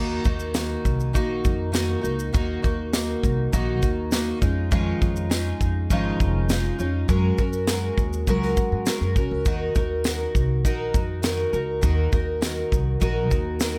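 A straight 4/4 pulse drives this heartfelt, carefree acoustic pop excerpt, with a modern studio drum kit's punchy kick, high-tuned snare and shaker joining at 0.2 seconds over a pizzicato upright bass, present from the very start, whose gut strings sound woody, dark and thumpy. Up front, a fingerpicked twelve-string dreadnought guitar gives a shimmering, octave-doubled accompaniment with subtle chorus and audible finger squeak, moving through Ebm, Dbadd9/F and Gbadd9 before returning to Ebm. A very quiet, jingly tambourine sits close and dry beneath it all, and the recording as a whole carries little reverb.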